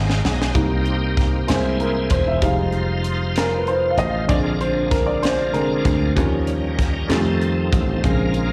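Reverent and uplifting, this slow gospel passage in 6/8 at 64 BPM opens with a brief drum fill and organ fill before a woody, intimate upright piano takes the solo from 0.6 seconds, its action noise audible under plate reverb and slapback echo, while a shouting tonewheel organ with key click, slow rotary speaker and chorus vibrato holds sustained chords further back, a dry, punchy, foam-muted thumbed slap bass and a tight funk kit with a high-tuned snare sit up front, and the whole live gig comes through the venue's PA into a recital hall's reverb over chords moving from Abmaj7 through Fm7 and Bb7 to F7.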